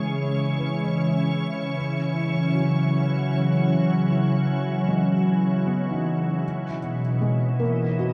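Ambient music at 77 BPM in 3/4 and C# minor, melancholic and spacious, moving from C#m7 to Emaj7 at 6.4 seconds in this short excerpt from a longer piece. A pure, full-bodied organ-like pad sits up front, holding sustained chords with a slow attack and long release, thickened by ensemble chorus. A felt-muted upright piano fades in from the background with mellow arpeggios, its delay and audible action noise adding intimacy, all set in a huge reverb with a 7.6-second tail within a dark, warm production.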